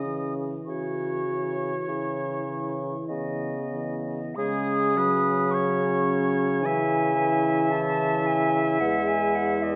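Heard through a wet recital hall reverb with a 1.5-second decay, this short excerpt from a slow movement for wind quintet opens in a roomy, resonant space. It is classical and romantic in character, solemn and melancholic, moving at 45-56 BPM in 4/4 with a rubato feel in C# minor, tuned to A4 = 436 Hz. A silver concert flute carries the melody high between D#5 and D#6 with an airy, straight tone, a crisp attack and a slightly distant placement. A clear oboe, touched with light vibrato and a soft attack, sings the second line beneath it. A mellow clarinet and a warm French horn fill in the accompaniment, while an up-front bassoon with a smooth top anchors the bass from E2 to C#3. All five play throughout the 9.8-second excerpt, resting on C# minor before settling onto a rootless C#m/E at 8.8 seconds.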